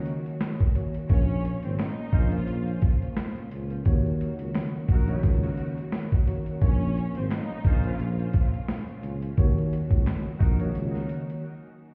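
A swung, head-nodding boom-bap groove drives this dark, gritty hip-hop fragment, cut from a longer piece. The sampler-style drum kit sits up front with a thumpy kick, a high-tuned snare and hi-hat, sounding compressed and pitched down, while a barely audible finger snap adds a faint human touch. A mellow tine electric piano carries the accompaniment through a cassette-tape haze, with a smooth studio string section holding sustained chords in the background, and a close-miked tuba enters at 1.1 seconds to anchor the bass. At that same moment a lush, distant violin section takes the melody with focused vibrato and tape echo, playing until 8.2 seconds, and a vintage horn section adds clear, lightly vibrating stabs from 2.1 seconds. The harmony moves between minor-seventh and minor add-nine chords, and the whole mix sounds muffled through a wall, coloured by stone-room reverb and vinyl crackle, before a brief break closes the passage.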